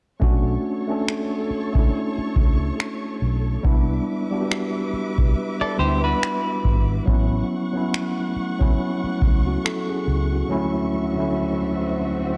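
A booming analog drum machine sets a swung 16th-note feel at 70 BPM in 4/4, its deep kick and finger snaps up front until 9.9 s, while a dark, round, foam-muted fingered bass holds the low end in this moody, longing contemporary R&B excerpt in B minor. A mellow tine electric piano carries the chords from Bm9 through Cmaj9 and A6 to Dmaj9, with a bowed studio string section adding smooth, expressive vibrato and portamento and a clean, scooped electric guitar slipping in brief picked arpeggios through analog delay at 5.6 s. An electronic swell enters from the background at 11.5 s, and the whole thing has a dry, gritty cassette-tape character.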